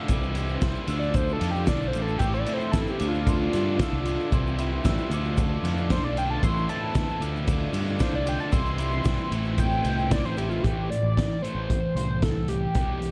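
A moody, bittersweet indie rock piece in A minor at 114 BPM opens with a thick, bright fuzz guitar riff, a soft rubber-mallet glockenspiel line bathed in plate reverb, and very quiet, glassy glass harmonica chords shimmering underneath. A growling, punchy fingered bass with overdrive, an up-front loose drum kit with a fat snare, dark cymbals and a pumping room sound, and a grainy tube shaker fall in at once. From 1.0 s a screaming, gritty sawtooth synth lead carries the melody with chorus and vibrato, joined at 2.2 s by a twangy, lo-fi guitar through a small old amp with tape echo, and after 10.6 s the fuzz guitar, bass, drums and lead carry on in this warm, close-sounding production.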